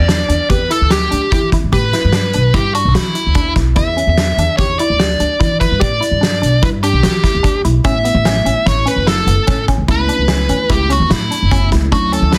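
Progressive instrumental band music in a straight 5/4 at 147 BPM, brooding and driving in E dorian, with a nasal, overdriven lead guitar through a parked wah carrying the melody up front over a growly pizzicato upright bass, a mellow wave-folded pluck with chorus and plate reverb spinning woody arpeggios, and a loose, roomy indie drum kit with a fat snare and tight kick, while a clean tine electric piano slips in at 7.8 seconds in the background as the harmony moves from Em7 to Aadd9, all inside a dense, heavily limited modern master, cut from a longer piece.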